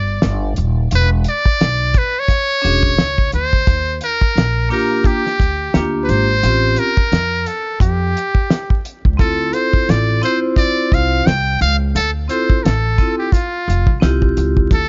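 A muted trumpet and a pizzicato upright bass open this mellow, nocturnal jazz-hop excerpt at 87 BPM in D minor, with a swung 4/4 feel. The trumpet carries the solo melody up front through a metal mute, sounding buzzy and thin with light vibrato and scooped notes in a jazz style. The bass sits close and dark, woody and thumpy on steel strings. A cloth-damped drum kit joins at 0.2 seconds with a fat snare, a tight kick and hi-hat, its tone dry, smooth and rolled off at the top. At 2.6 seconds a vibraphone struck with hard mallets adds metallic, ringing accompaniment with its motor off, giving a vintage, band-limited color over chords moving from Bb6 and E13 through Ebmaj9 and A7#9b13 to Dm7. The whole mix carries vinyl crackle, a dull top end and very little reverb.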